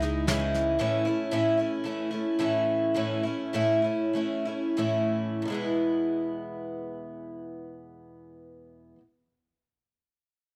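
The recording sits in a moderate, large studio reverb that lends the acoustic folk performance a spacious, nostalgic air. It is a short cut from a longer piece in E major and 4/4, with a straight feel and a tempo between 86 and 115 BPM that slows from 0.8 to 5.5 seconds. A picked twelve-string acoustic guitar carries the accompaniment up front, its octave-doubled strings giving a warm, shimmering concert tone that spans E2 to E4. At the very start, a dark, woody pizzicato upright bass sounds a C#2 and a medium-tuned snare played with brushes adds a small-room touch, both stopping by 0.8 seconds and leaving the guitar alone. The harmony moves from C#madd9 to A, then settles on E as a new section begins at 5.5 seconds, and the guitar rings on until 9.0 seconds.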